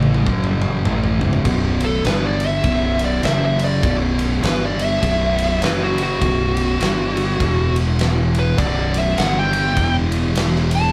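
Recorded by a band playing live in one large studio room with moderate reverb, this stoner and doom metal cut moves at 101 BPM in 4/4 with a swung feel in B minor, sludgy and hypnotic. Two thick, distorted fuzz guitars carry the riff, one warm and up front, the other dark and very quiet. Beneath them sit a bright, growly fingered electric bass with overdrive and a big acoustic rock kit with a fat snare, tight kick and rolled-off top that opens with a fill. At 1.8 s a compressed fuzz lead guitar enters up front for a solo over chords such as B5, G5 and F#5.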